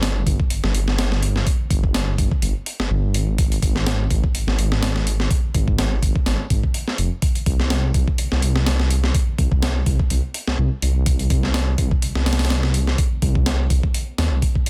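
A dense, heavily limited and nearly dry mix opens this short swaggering, gritty breakbeat cut with a swung feel, where a compressed sampler-style drum kit with a thumpy kick, high-tuned snare and hi-hat sits up front beside a thick, menacing detuned saw bass that growls dark and saturated between F1 and Eb2 for the first 14.4 seconds.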